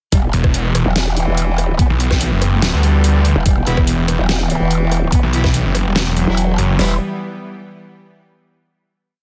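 A snarling, detuned sawtooth bass and a saturated growl bass with wobbling formant-filtered phrases drive this aggressive, menacing heavy wobble dubstep piece in E minor at 144 BPM in half-time, over two layered, overdriven electronic drum kits with a knocking kick, deep snare, rim click and bright hats, while a dark, intimate cello repeats a sixteenth-note riff over a pedal note through tape echo, a lush pumping supersaw pad sits low-passed in the background, a bright brass ensemble adds sparse echoing power-voiced stabs from 3.7 s, and the dense, heavily limited mix closes on a final E5 chord at 6.8 s.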